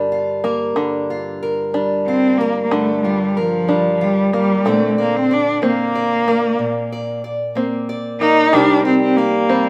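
A fingerpicked archtop guitar, up front with audible finger squeak, and a twangy, plunky open-back banjo playing arpeggios open this haunting, melancholic acoustic folk passage in a straight 6/8 over Gm7, Bbadd9 and Cmadd9 chords, before a nasal, boxy bowed cello enters at 2.1 seconds to take the expressive lead with vibrato and portamento in a moderate studio reverb.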